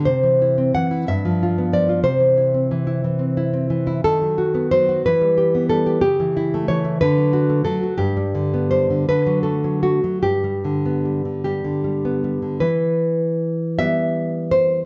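Tender and sunny, this romantic piece for solo classical guitar moves in 6/8 at a rubato pace of 49-64 BPM, counted in dotted quarters, and is cut from a longer work. The fingerpicked nylon-string guitar sits up front with a dark, full-bodied tone, ranging from G2 to F#5 as its harmony travels from C through G7, B7/D# and A7/C# to settle on G before turning to E minor at 12.6 s for a brief new section. Close, detailed microphones catch every note, and light reverb adds a gentle glow.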